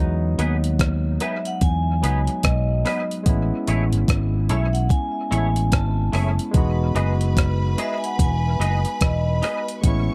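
A thumpy, sampler-style drum machine with kick, hi-hat and rim click sets a swung 4/4 lovers rock groove under a round, punchy fingered bass, while a barky, lightly overdriven tine electric piano with dub echo and a twangy, chorused electric guitar play stabs and accompaniment over Emaj7 and Amaj7; a ringing, hard-mallet vibraphone with tape echo carries the sweet, romantic melody from 1.2 seconds, and a lush bowed string section joins at 6.6 seconds in this short, dry cut from a longer piece.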